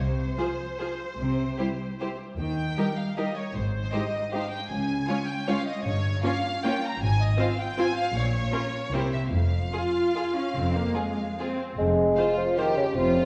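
Heard through worn, warbling old cassette tape with a pitch that drifts, and set in a reverberant recital hall, this fragment of a dark, bittersweet orchestral ballroom waltz in F minor sways in 3/4 at a rubato 137-169 BPM. A clear, distant violin section carries the lush, vibrato-rich melody, while a second, more intense violin line and a smooth, even viola section fill in the accompaniment above deep, bowed cello and double bass sections holding the bass. At 11.8 s a punchy, mellow solo bassoon steps up front and a vintage-toned French horn section adds sustained chords in the background, closing the passage on its minor-key harmonies.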